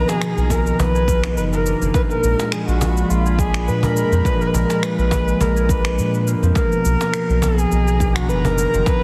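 This earthy, warm piece of organic downtempo opens with a dark, woody kamancheh, bowed by one player with vibrato and portamento, carrying the melody up front with a touch of delay. Around it, a smooth, detuned analog pad sustains chords with a slow attack, chorus and sidechain pumping. A fingerpicked concert harp rings out arpeggios through tape echo, and a round, deep analog bass sits up front with a fast attack. At 0.1 seconds a layered electronic shaker and finger snaps join, with a cajon playing faint snares in the background, and a produced, deep electronic kick arrives at 0.5 seconds under a lightly swung 16th-note feel. The harmony moves from Bmaj7 to Bb7b9 and back, set in a moderate stage reverb with small room ambience and a heavily compressed, radio-like sound, in an excerpt cut from a longer piece.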